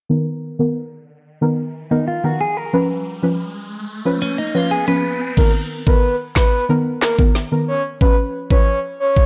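Dry and gritty with a dull, tape-worn top, this excerpt of tough, hypnotic dancehall opens on deep, mellow chord stabs whose pumping, chorused plucks sit under a filter sweep, while a riser builds and a clean, bright electric guitar picks compressed arpeggios through spring reverb and tape echo from 1.9 seconds. At 5.4 seconds an up-front electronic afro-pop kit arrives with a knocking kick, woody snare, handclaps and crash. Alongside it enters a breathy, flute-like synth lead with soft attack, vibrato and echo, carrying the melody over the alternating Bmaj7 and Db7 chords.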